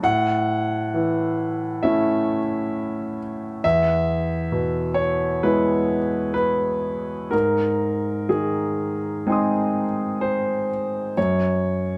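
Melancholic and reflective, this short passage, cut from a longer piece, is neoclassical minimalist piano at a slow 61-67 BPM in 4/4, played with a rubato feel and tuned to A4 = 439 Hz. A solo concert grand carries everything from 0.0 to 12.0 seconds, spanning E2 to D#6 with a clear tone and deep bass. The harmony moves from A to E at 3.6 seconds, then to G#, and settles on an F#5 chord at 11.2 seconds. The piano sits up front with an intimate, slightly boxy tone, and the noise of its action is audible beneath the long-sustaining notes. A light reverb gives the room a gentle sense of space.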